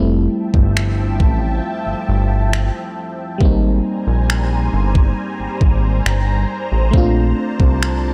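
A dark, warm production with little reverb frames this dreamy, smooth contemporary R&B excerpt, set in F major at a slow 68 BPM in a straight 4/4. An up-front analog bass, fat and detuned with a sawtooth edge and a filter sweep, sits low and sustained beneath everything from the first moment. A glassy FM electric piano with a bell-like attack and a faint noise layer plays decaying accompaniment chords through a chorus effect, while a lush unison pad enters at 0.3 seconds with sustained, bright sawtooth and square-wave chords, thickened by a sub octave, slow attack, long release, chorus and phaser. The electronic drum kit joins at 0.5 seconds with finger snaps and a knocking, tape-warm kick placed well forward. The harmony drifts from Fmaj9 to Abmaj9 and then Bbmaj9, lending the short passage a floating, unresolved glow.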